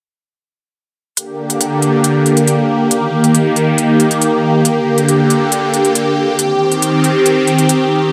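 Set in a half-time 4/4 pulse at 138 BPM, this aggressive, menacing heavy wobble dubstep excerpt in G minor pairs crisp, tape-warm, layered electronic hi-hats (1.2 to 7.8 seconds) with a bright, up-front, detuned supersaw pad whose slow attack and phaser sustain chords moving from Gm to Eb, back to Gm and on to Cm until 8.1 seconds, all placed in a lush digital hall reverb.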